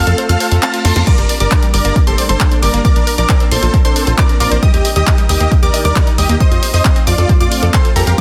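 Soaring and emotional, this uplifting trance passage, cut from a longer piece, moves in a straight 4/4 over a chord cycle of F, Gm, Bbadd9, Eb and back to F. A huge, thick supersaw carries the melody with vibrato, sampler grit and tape echo, while a round analog pluck adds a high second line and a bright, detuned unison pluck runs arpeggios in the background. A lush, slow-attack pad holds sustained chords beneath them, and a tight sequencer bass drives the low end with a mellow, decaying tone. A punchy analog drum machine supplies crash, handclaps, hi-hat and snare with a short room sound, and a very quiet reverse cymbal sounds from 0.6 to 1.1 s around a drum fill at 0.8 s. The up-front electronic kick enters at 1.1 s, and sidechain pumping gives the melody, plucks, pad and bass a breathing motion in a dense, heavily limited mix with light reverb.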